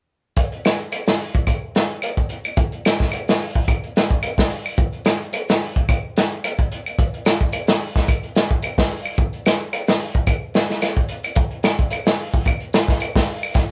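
A crunchy breakbeat drum kit sits up front in this funky, driving afrobeat passage cut from a longer piece, its hi-hat, tight kick and medium-tuned snare sounding gritty and saturated with a mid-forward, rolled-off top. Woody, vintage claves with a band-limited tone join at 0.7 s and stay in the background, riding the swung 4/4 groove. The pair plays as a live band in one studio room, touched by light reverb.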